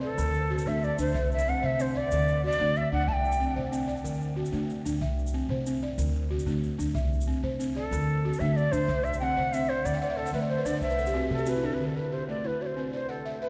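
A breathy, end-blown bamboo shakuhachi carries the melody with vibrato, sitting distant yet up front, falling silent at 3.6 seconds and returning at 7.7 seconds in this flowing, warm West African string and xylophone piece in a straight 12/8, cut from a longer work. Underneath, a close-miked balafon played with soft rubber mallets spins woody, buzzing arpeggios throughout and adds a fill at 9.9 seconds, while a growly, thumpy pizzicato upright bass with steel strings and a grainy, bright egg shaker keep the pulse. The whole ensemble swims in a long cathedral reverb, giving a spacious church-hall sound with a soft, rounded top end.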